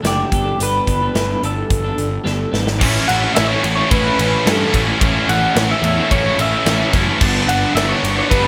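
Up front, a big rock drum kit with bright cymbals and a punchy kick drives this cathartic, bittersweet quiet-loud alternative rock excerpt at 109 BPM in A mixolydian, as a lo-fi, slightly broken-up lead guitar with analog chorus and delay carries the melody over fuzzy overdriven bass and a twangy, tremolo-laced twelve-string arpeggio, until a drum fill at 2.3 seconds gives way at 2.8 seconds to a background wall of biting overdriven, fuzz and double-tracked high-gain riff guitars, all under light reverb.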